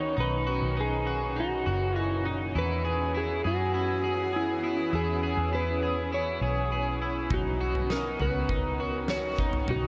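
A straight 4/4 pulse at 101 BPM carries this ethereal, blissful dream pop excerpt in B major, moving from Badd9 to E6 and back, with a dark, round, foam-muted picked bass sitting up front beneath a shimmering, detuned sine pad that warbles with chorus and an octave-up glow. A twangy electric guitar at the edge of break-up picks chorused, delayed arpeggios while a compressed slide guitar sings the melody through analog delay. At 7.3 s a huge arena drum kit arrives with a punchy kick, fat snare and toms, all bathed in a reverb-soaked mix.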